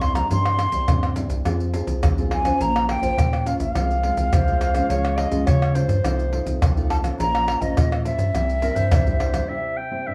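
A tight surdo, pandeiro, tamborim and maracas set a straight, lively samba-and-choro pulse in 4/4, played with hard hands and sitting up front with a small-room, acoustic feel. Beneath them, a rubbery, bouncy bass with a dark, wave-folded square tone and a resonant filter pluck carries the low end. A thumb-plucked nylon-string guitar in a classical manner supplies the accompaniment, while a breathy, hollow jazz flute with vibrato and lifted highs sings the nostalgic minor-key melody. At 4.3 seconds a warm clarinet with a smooth top enters as a second line in a classical style. The percussion drops away at 9.5 seconds for a brief break as the chords move through a minor progression, all set in a moderate large-studio reverb in this fragment cut from a longer piece.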